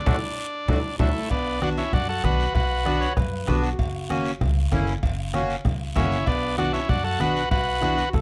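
Close, detailed microphones and a light reverb give this festive cumbia fragment a crisp, immediate sound. A vintage, buzzy combo organ sits up front with the melody, playing from the start to 3.1 seconds and again from 6.0 seconds. A bright, barky tine electric piano heard through a combo amp adds a second line, while a reedy accordion with slow beating fills in the accompaniment and a woody pizzicato upright bass anchors the low end. The first 1.3 seconds bring a drum fill and a band accent, driven by a dry bombo struck with a soft beater, low-tuned congas played with soft hands, a raspy guiro, and ringing metal-shell timbales and cowbell set distant in the background. The chords move from D to Bm, F# and back to Bm, keeping the danceable groove in a straight 4/4.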